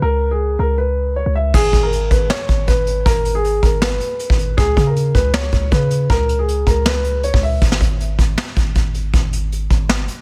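A half-time trap groove at 158 BPM drives this eerie, hard-hitting hip hop excerpt, with a vintage brush drum kit entering at 1.5 seconds to add a punchy kick, a medium-tuned snare, hi-hat and dark crash cymbals, all with a rolled-off top. Underneath, a deep, boomy 808-style bass with a sine tone and fast, decaying attack holds the low end, while a mellow, intimate grand piano carries the melody through a low-pass filter, its action noise audible and its long sustain ringing until it stops at 7.6 seconds. The harmony moves between C#7 and G#m before dropping to unaccompanied drums and bass, and the studio room keeps every part up front.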